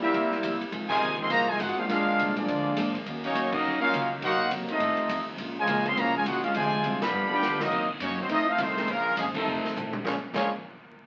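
A bright trumpet section carries the melody up front in this dramatic, brassy big band swing fragment, with a clear trombone section on the second line, a mellow saxophone section holding soft chords until 7.7 s, a warm grand piano and a very quiet fingerpicked steel-string acoustic guitar comping, a woody pizzicato upright bass, and a polished, airy drum kit with a punchy kick adding fills as the whole band hits accents together, all heard through wet studio reverb and the crackle of a very old 78 rpm record.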